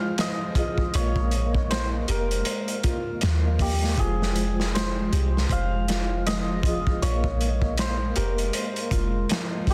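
A crunchy, gritty breakbeat kit swings its 16ths at 79 BPM from 0.2 s and a deep, round 808-style bass joins at 0.9 s beneath this brooding, melancholic trip hop excerpt, where a shimmering hammered santur carries the melody in tape echo over a mellow soft-mallet vibraphone with tremolo, fingerpicked nylon-string guitar arpeggios set in the background with audible finger squeak, and a very quiet detuned analog pad sustaining Fm and Bbsus4 chords, all in a dense, heavily limited studio-reverb mix.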